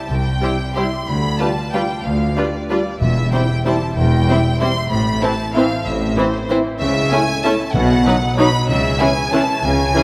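A smooth violin section carries the melody over ringing, fingerpicked harp arpeggios from the opening. Cellos and double basses soon anchor the bass, while a second, expressive violin line, a distant viola accompaniment and mellow, loosely held French horn chords fill in behind. This elegant, sweeping classical passage in C major moves in a rubato 3/4 at 189 BPM through a concert hall's lush reverb, with very quiet timpani strokes at 3.0 and 7.7 seconds and chords drifting from C toward C#m.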